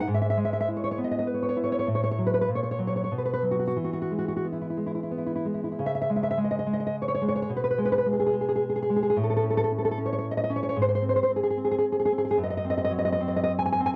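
A thumb-plucked nylon-string guitar with fresh strings sits up front in this short romantic solo for classical guitar, a 14-second excerpt from a longer piece. It moves in 3/4 with a free, rubato feel, ranging from about 79 to 114 BPM, in a sunny E major, and spans from F#2 up to G#5. The opening passage runs to 5.8 s, moving from E/G# through F#m/A and F#/A# to a B5 before settling on E. A second passage then begins on C#5 and travels through G#m/B, A and G# to end on G#7/F#. The sound has a light reverb and the worn, warbling character of old cassette tape, with a warbly pitch drift.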